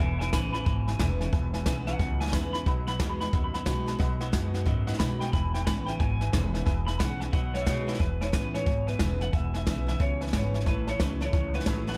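A swung 4/4 shuffle at 180 BPM drives this rowdy, upbeat rockabilly excerpt in E major, cut from a longer piece and tuned slightly sharp to A4 = 444 Hz. Up front, a brushed jazz kit works hi-hat, a medium-tuned snare and a boomy kick in a small room, while a pizzicato upright bass with steel strings adds a woody low end. For the first 8 seconds, a twangy, lo-fi electric guitar through a small old amp plays a slightly broken-up lead solo, coloured by subtle chorus and tape echo. Behind it, a second bright, picked electric guitar plays a low riff with a vibrato effect, a full-bodied dreadnought acoustic picks out the accompaniment, and a detuned, jangly honky-tonk upright piano adds short-sustain accompaniment in the upper register. The harmony moves between E and B before shifting to A near 10.7 seconds, all set in a light reverb.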